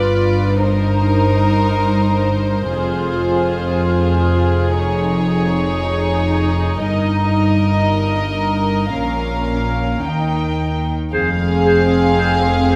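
Cinematic, emotional film score in F minor at a slow, rubato 58 BPM, its moving, longing mood carried by soft-attack, sul tasto strings: a floating violin melody over a second violin line, intimate violas with light vibrato, and cellos and a dark double bass section anchoring the harmony. The progression drifts from G7 through Fm, Dbadd9/F and Bbm before resolving back to Fm at 11.1 s. At that point a clear oboe and a very quiet clarinet add a brief second line, while a distant French horn section holds sustained chords in the background, all set in a moderate scoring-stage reverb in this passage cut from a longer piece.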